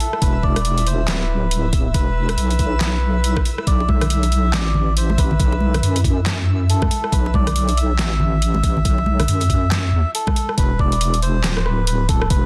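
A half-time, swung 139 BPM groove in 4/4 drives this meditative, cavernous deep dubstep excerpt, where a knocking, overdriven electronic kick and a kit of deep snare, bright hats, handclaps and rim clicks sit under an up-front, chorused wobble bass, while a reedy, breathy melodica carries the melody with dub echo, a reversed, dreamy swelling texture glimmers in the background until 10.6 seconds, and bongos and congas played with hard hands join from 3.8 to 10.3 seconds over a dense, heavily limited mix moving from E5 to Bsus4 and back.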